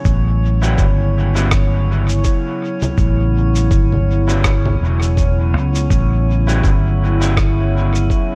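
Ambient dub in a spacious, hazy mood, cut from a longer piece, where a growly, up-front fingered electric bass and a muffled, thumpy electronic kick anchor a warbling, lo-fi tape-like pad and a glassy texture of drifting overtones, while echoing electronic cabasa, rim click and congas and twangy, slightly broken-up guitar stabs through a small old amp float in an echo-heavy mix over a single A13 chord.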